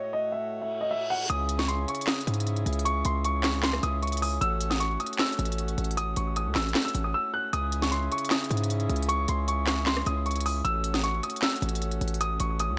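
A half-time trap groove of sharp snare, crisp hi-hats, handclaps and rim clicks drives this melancholic, dark hip hop excerpt, where a mellow, low-pass-filtered grand piano melody with delay sits over reedy, breathing harmonium chords from the start, a reverse cymbal at 0.7 seconds ushers in the drums and a saturated, aggressive 808-style bass at 1.3 seconds, and the drums drop out briefly at 7.1 seconds, all set in a light studio reverb.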